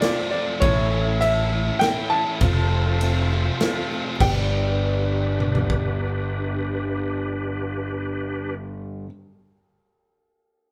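Folk rock with a heartland rock lean, this hopeful, jangly passage moves at 100 BPM in a straight 3/4, centred on G mixolydian, and is cut from a longer piece. A brilliant baby grand piano carries the melody up front, its short, present notes revealing audible action noise, while a dark, woody upright piano sits very quietly beneath it with a slightly detuned, vintage sustain. A boxy, octave-doubled twelve-string acoustic guitar shimmers in the background, and a reedy tonewheel organ holds sustained chords with key click, chorus vibrato and a fast rotary speaker. A double-tracked overdriven guitar plays a crunchy riff, a round, amped fingered bass joins at 0.6 seconds, and a natural country drum kit with a punchy kick and dark cymbals drives the groove until it stops at 5.8 seconds. The band sounds like it is playing live in one room, with a moderate large studio reverb, as the chords move from F to A and back before settling on G at 4.2 seconds.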